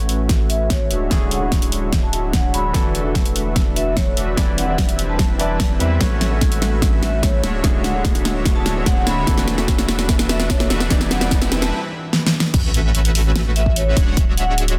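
A dark, ringing vibraphone carries the melody through this lush, euphoric half-time future bass passage, pumping against the beat and sharing a filter sweep with a smooth, detuned supersaw riff as both build toward the drop at 12.5 seconds. Beneath them sit a background grand piano with sidechain pumping and delay, a very quiet ethereal pad of slow-blooming sustained chords, and a thick, saturated sub bass. A punchy electronic kick and an up-front pop kit with a fat snare, hats and crash drive the build with fills, while a faint riser lands on an impact at the drop, all in a dense, heavily limited modern mix with light digital ambience.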